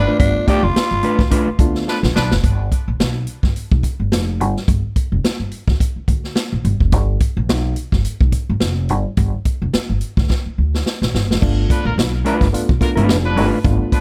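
A raspy, growling tenor saxophone with tape echo opens this playful, gritty funk excerpt at 107 BPM in G mixolydian, its brief solo accompanied from the start by a punchy, tape-echoed horn section and woody pizzicato upright bass, with dark clean electric guitar and a barky, phased electric piano following within a fraction of a second, while a swinging big-band drum kit enters at 0.2 seconds and adds fills at 1.9 and 10.3 seconds before the horns, guitar and piano return near the close in a studio reverb.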